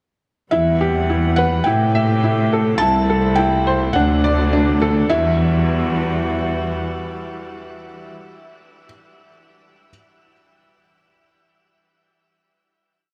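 A melancholic, moving piano and strings electronica piece in E minor at 105 BPM opens with everything at once: a clear, woody upright piano plays an eight-step arpeggiated riff, a felt-muted upright piano sings a soft, intimate melody of arching motifs above it, a veiled con sordino string quartet holds dark sustained chords, and a lush bowed cello section sits up front with smooth, vibrato-rich root notes. The short build moves through Emadd9, Am7, C6 and D7 before landing back on Emadd9 as a final chord at 5.1 s, with both pianos and the quartet bathed in shimmer reverb and the pianos also trailed by digital delay, all inside a small echo-chamber room. The cellos drop out at 6.8 s and the muted melody ends at 8.8 s, leaving the clear piano riff alone to finish the piece.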